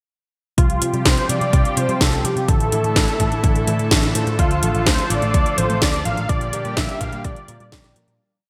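A punchy four-on-the-floor electronic kick and a house kit with a cracking snare, metallic closed hats and gated reverb drive this short, nostalgic and danceable italo disco piece at 126 BPM, where an amped, envelope-filtered picked electric bass jumps octaves beneath a thick, warbling sawtooth lead with delay and vibrato playing hook phrases, a lush, airy chorused pad sustaining Csus4, Asus4, Dm and Bb6 chords, a very quiet four-step filter-pluck arpeggio and, from 2.7 s, a dark, boxy grand piano with ensemble chorus adding off-beat stabs in the background, all set in a lush hall with bright 1980s-style digital production before fading out from 5.7 s.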